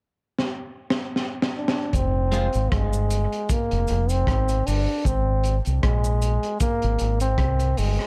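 A solo trombone with dub echo carries the melody up front in this hypnotic, deep dub reggae excerpt at 77 BPM in F dorian, entering at 1.6 seconds over a crunchy breakbeat drum kit whose fill opens the piece at 0.4 seconds with a high-tuned snare, tight kick, hi-hat and rim click, all gritty, saturated and dark with a rolled-off top. When the groove settles on Fm before moving to Ab, a round, deep fingered electric bass joins up front, a cabasa sits close in the background, and an electric guitar at the edge of break-up adds a brief compressed, picked figure with dub echo at 2.3 seconds. The swung sixteenth-note feel and small room ambience keep the sound intimate and heavy.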